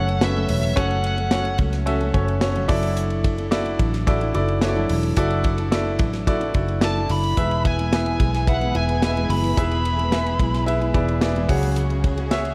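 A polished, present baby grand piano sits up front in this driving, bittersweet piano-driven pop excerpt, laying down accompaniment in a straight 4/4 at 109 BPM over a progression that moves from F#m through Dadd9 and E to C#sus4. Beneath it, a full-bodied dreadnought acoustic guitar fingerpicks a riff, while a dark, foam-muted electric bass with a round, punchy tone anchors the low end. A studio drum kit with a punchy kick, medium-tuned snare, hi-hat and ride keeps the pulse, its top end rolled off and its sound mid-forward. A bluesy overdriven lead guitar, distorted and picked with tape echo, states a brief melodic phrase at the outset and returns at 6.8 seconds, and a lush, woody bowed string section with vibrato slips into the background at 7.4 seconds with sustained chords. The whole mix is soaked in moderate church reverb, giving it a dreamy, spacious glow.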